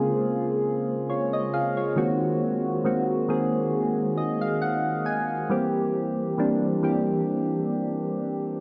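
A slow 4/4 pulse with a gentle swing on the sixteenths gives this brief R&B fragment, cut from a longer piece, an unhurried, longing feel. A single soft synth keyboard with an electric-piano character plays alone throughout, its round, mellow tone set up front with a quick attack that decays gently. Chorus and phaser color the sound, and a moderate plate reverb lends a moody, lingering tail. The harmony moves from Bbm9 to Ab9 at 2.0 seconds, and a short keyboard fill from 3.7 to 5.5 seconds leads into a C7 chord that carries the clip to its end.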